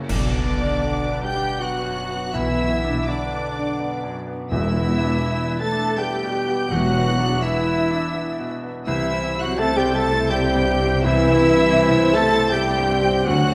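Bittersweet and longing, this excerpt of a cinematic, emotional film score moves at a rubato 82 BPM in 3/4, drifting from B minor through E minor seventh to C major. A high violin section carries the melody with rich, distant vibrato, while a flute, a second violin section and a clarinet share a second line beneath it, the flute pure and close-miked, the clarinet soft in attack and roomy. A mellow French horn section holds sustained chords, and a dark, expressive cello section and a double bass section anchor the bass. A bright, brilliant grand piano and a viola section with a smooth top supply accompaniment in the background, as a very quiet fingerpicked harp rings out arpeggios across its range. Clash cymbals and concert bass drum mark a band accent at the opening, and soft-mallet timpani sound a round E2 from 4.5 to 5.6 seconds, all set in a wet scoring-stage reverb.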